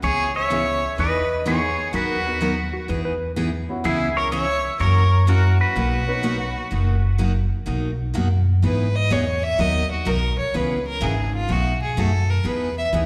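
Heard live through a venue's PA with recital-hall reverb, this playful, down-home country excerpt swings at 126 BPM in B major: a bright pedal steel guitar with volume swells carries the melody until 7.2 seconds, a clean lap steel adds a brief dark line at 2.7 seconds, a woody upright piano and a full-bodied, finger-squeaking dreadnought acoustic guitar fill in beneath, a thumpy gut-string upright bass sits up front, and a rich, smoothly bowed fiddle with light vibrato takes a solo from 7.7 seconds.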